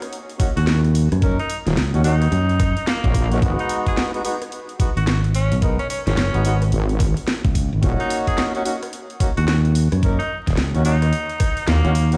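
A gritty, swaggering glitch hop excerpt opens on a cracking electronic snare with bright hats and rim clicks. Within the first second it is joined by a knocking kick, tight, mellow horn stabs that pump and trail tape echo, a forceful, punchy tenor saxophone lead with vintage vibrato and its own echo, and a direct, up-front fingered electric bass. At 1.7 seconds a heavy, saturated wobble bass with chorus pushes forward with a detuned sawtooth growl over a swung groove moving from D#m7 to G#m7 and back, all heard through a big system in a bare stone room with vinyl crackle, until the kick drops out at 11.7 seconds.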